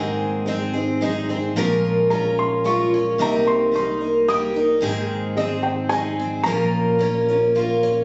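An up-front, bright steel-string acoustic guitar with audible finger squeak carries the accompaniment in this haunting, intimate folk excerpt in 3/4, joined by a shimmering, octave-doubled twelve-string playing arpeggios, a round, amped electric bass, and a felt-muted upright piano whose soft, mellow, short-sustained melody, with audible action noise, drops out at 7.5 seconds, all heard through a reverberant, phone-captured club room with a dulled top end.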